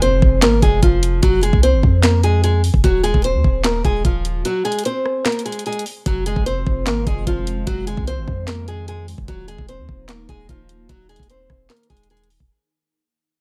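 A half-time trap groove at 149 BPM, driven by an up-front electronic kit with a knocking kick, sharp snare, bright hi-hats, handclaps and rim clicks, carries this brooding, melancholic hip hop fragment, where a small, fingerpicked nylon-string guitar melody sits up front over a deep, boomy 808-style bass with fast-attack, decaying notes; a barely audible impact opens the passage, a brief break falls at 4.5 to 6.1 seconds, and a glassy, ethereal FM pad with chorus, phaser and reverb enters in the background at 6.7 seconds, all within a digital ambience as the chords move between Fm, Ebm and Fm7 under a fade-out that runs nearly the whole length.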